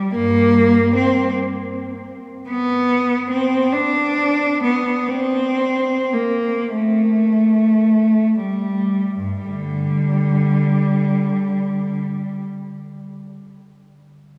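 Classical and meditative, this short, yearning excerpt for unaccompanied cello moves in a free, rubato 6/8 in G minor at a very slow 20-53 BPM, slowing down from 1.3 to 9.2 seconds. A single bowed cello plays up front from G2 to D4, its rich, focused tone carrying vibrato and a smooth top until it stops at 12.4 seconds. A wet cathedral reverb with a 4.6-second decay surrounds the instrument, giving it the lingering sound of a church or concert hall.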